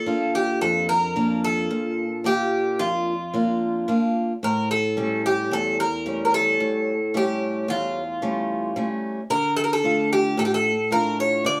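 A bright, metallic Greek bouzouki carries a wistful, melancholic melody over a warm picked archtop acoustic guitar from the very start of this short Greek folk cut, moving at 111 BPM in a straight 9/8 and tuned to A4 = 436 Hz, with both instruments up front in a moderate studio reverb as the harmony passes from Bb to A7 at 4.4 seconds and settles on Dm at 9.3 seconds.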